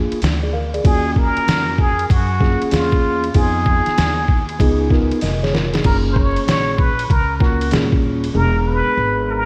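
A swung 96 BPM jazz-hop groove in F# major rides on a gritty, pitched-down sampler-style drum kit with a thumpy kick and crash, ride and hi-hat, a brief drum fill running from 5.2 to 5.8 seconds, while a woody pizzicato upright bass and a mellow tine electric piano with subtle chorus lay down extended jazz chords such as D#m9, C#9 and F#maj9. From 0.9 seconds a plunger-muted trumpet takes the relaxed, smooth melody up front, its soft-attacked, scooped notes carrying light vibrato and trailing into a diffuse ambient delay. The whole cut is dreamy and soaked in lush hall reverb with a layer of vinyl crackle, and it is an excerpt from a longer piece.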